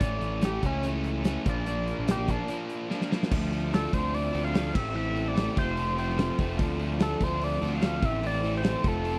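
An edgy, tearing sync lead with chorus, tape echo and vibrato carries the melody from the first second, taking a solo through the opening 3.3 seconds before a drum fill pushes the music into D minor. This moody, restless indie rock cut from a longer piece runs at 146 BPM in a straight 4/4, moving from A and Bb into a cycle of Dm7, Am and F. A bright, biting overdriven guitar with spring reverb and a crunchier one with subtle chorus, sitting in the background, both play picked riffs, while a punchy fuzz bass with overdrive sits up front. A big acoustic rock kit with a punchy kick, a medium-tuned snare and a dark, rolled-off top drives nearly all of the 9.2 seconds. From 3.3 seconds a barely audible string machine cello part adds mellow, slow-attack sustained chords, and the sound is dry and close, like a 1970s studio recording.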